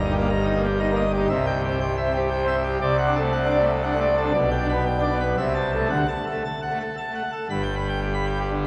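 In a straight 3/4 at 118 BPM, this jubilant organ toccata unfolds in G major. A solo pipe organ on full organ carries the whole passage from 0.0 to 8.7 seconds, spanning G1 up to B5 with bright mixtures, a baroque voicing and a crisp chiff on the attacks. The harmony opens on Eb/G, then travels through C, D7/C, G/B, Am/C and D before landing on G at 7.5 seconds, where a brief new section begins. The organ's majestic tone sits up front, while a wet church reverb with a 3.4-second decay places the listener further back in a resonant space. Cut from a longer piece, this brilliant fragment feels like a triumphant moment caught mid-flight.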